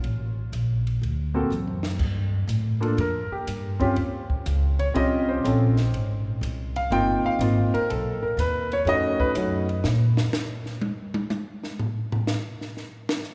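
A swinging 4/4 pulse at 123 BPM, with the eighth notes swung, drives this smoky jazz piano trio excerpt. A compact cocktail drum kit, dark and smooth with a high-tuned snare and a punchy kick, moves across ride, hi-hat, crash, snare and toms, while a woody, up-front upright bass is plucked on steel strings in its low register. The concert grand enters at 1.3 seconds, and after a short drum fill it takes a solo from 2.0 seconds as the harmony moves from Gm9 through Eb13, Ab6 and B9. The piano's tone is warm and intimate, with deep bass and audible action noise. Around 9.8 seconds the chords fall away and the drums take a solo to close the clip. A wet church reverb with a long tail surrounds the trio.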